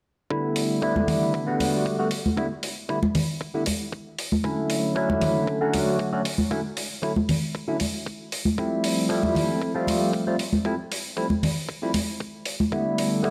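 A straight 4/4 nu-disco groove with a sunny, groovy feel rides a thumpy, sampler-style electronic kick with a high-pass filter, a dry acoustic hi-hat and soft-handed, high-tuned congas, while a bright, barky tine electric piano sits up front through a combo amp, colored by phaser, sidechain pumping, low-pass filtering and tape echo as it moves from A9sus4 through Dmaj7 and Fmaj7 to G69, all in a dark, warm production with moderate plate reverb, in an excerpt from a longer piece.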